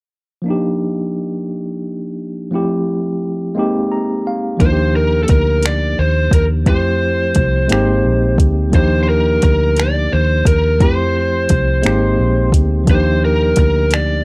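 A dark, overdriven lead guitar, picked through a small cranked amp and placed up front, carries the melody of this slow six-eight R&B excerpt in Eb major at 58 BPM, its line staying between A4 and D5. Before it arrives, a bright tine electric piano opens alone at 0.4 seconds, sounding worn and slightly out of tune yet clean through its built-in speakers, and it plays a short fill just before the full band enters at 4.6 seconds. From there a vintage fingered electric bass adds a round, foam-muted, amped low end, while a smooth electronic R&B kit supplies finger snaps, metallic hi-hat and a soft kick, re-recorded in a large room. The harmony moves through lush Ebmaj9, Fmaj9 and Abmaj9 chords, giving the warm, sensual mood a gentle glow. The overall recording is dry and close, with a 1970s studio character, and the excerpt cuts off at 14.2 seconds as part of a longer piece.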